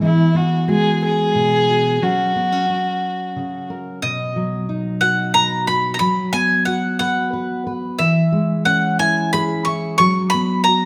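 A dark, woody fiddle with light vibrato opens this warm, pastoral acoustic folk piece in B major at 60 BPM in a straight 6/8, carrying a brief solo over a full-bodied, fingerpicked dreadnought steel-string guitar until it stops at 3.7 seconds, after which an up-front mandolin with warm, picked double strings takes the melody from 4.0 seconds over chords moving from B through F#sus4 and C#m/E, all set in a moderate recital-hall reverb.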